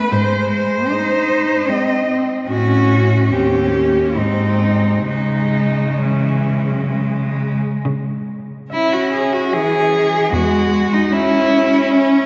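Classical and lyrical, this short excerpt from a longer piece is written for a cello ensemble in a flowing triple metre, played with rubato and a yearning, solemn mood. Four bowed cellos, each a single player using vibrato, share the texture: a focused upper cello carries the melody while a smooth, even second cello sings a line just beneath it. A rich accompanying cello joins at 0.9 seconds to fill the middle, and a clear cello anchors the bass until 11.0 seconds. The melody and bass cellos sit up front, though the lead voice also has a distant quality. A reverberant church acoustic with a long decay surrounds the ensemble, lending the harmonies a devotional glow as they settle onto a minor chord near the close.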